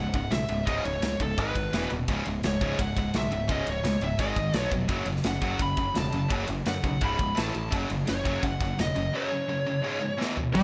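A dark, high-gain lead guitar with digital delay carries the melody over two bright, distorted rhythm guitars sitting in the background, a growly overdriven picked bass and a punchy, up-front metal drum kit with bright cymbals in this aggressive, relentless heavy metal excerpt, which ends with a drum fill at 10.2 seconds before a bluesy, overdriven lead guitar strikes a single note at 10.6 seconds.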